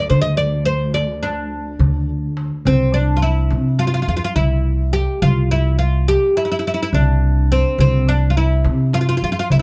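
Turkish makam ensemble music in a stately, passionate 9/8, cut from a longer piece, where a bright, woody fretless oud with double strings carries the melody up front over a thumpy gut-string upright bass, a crisp metal-shell darbuka sits in the background, and a dark bowed chamber cello section holds a vibrato drone only until 2.7 seconds, all within a moderate studio reverb and a dark, warm production.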